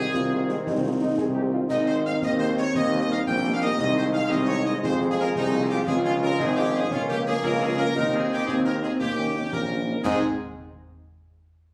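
This military-style march for wind band, in a straight 6/8 at 115 BPM in Ab major, has a festive, spirited character and is cut from a longer piece. A trumpet section carries the melody with light vibrato, sounding distant and roomy, while a mellow euphonium sits in the background on a second line until 9.8 seconds. Beneath them, a dark French horn section plays soft-attacked accompaniment, and a very quiet trombone section holds sustained chords. A tuba with vibrato stands up front on the bass. Concert snare, bass drum and dark-toned clash cymbals, close and dry, keep a discreet pulse from 0.1 seconds. The harmony moves through Ab, Fm, Db and Eb7 before settling on Ab at 10.0 seconds as a new section begins. The whole band is heard through a phone in a large, reverberant room, giving it a wet, roomy sound.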